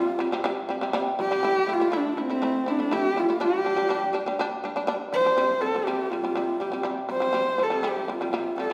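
A husky, dark horsehead fiddle carries the melody up front, its bowed line colored by vibrato and portamento across an expressive phrase in this galloping, proud Mongolian folk passage at 122 BPM in 4/4. A mellow, plectrum-plucked shamisen plays buzzing, percussive arpeggios beneath it as the harmony moves from C to A, then G, and back to C at 5.4 seconds. Both parts play throughout the 8.7-second cut, set in the lush reverb of a recital hall.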